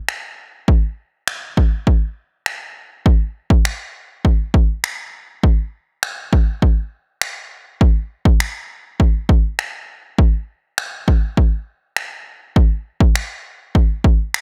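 From 0.1 seconds a punchy analog drum machine sets a straight 4/4 pop pulse at 101 BPM, its overdriven kick drum and finger snaps sitting dry and up front. The mood is carefree and euphoric, and this short cut from a longer piece carries the beat alone to its close at 14.4 seconds.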